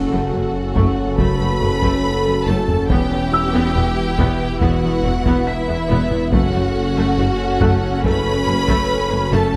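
A vast, futuristic hybrid orchestral and electronic film score cue, cut from a longer piece, where warm, lush bowed violins carry the melody and a second line over rich violas, background cellos and double basses, distant dark French horns, a hollow, chorused soft pad and a deep, rumbling detuned saw bass, opening on a huge impact before close, dry taiko drums and a felt-muted upright piano with digital delay enter at 0.8 seconds, all moving through F#m, Em and back to F#m on a moderate scoring stage.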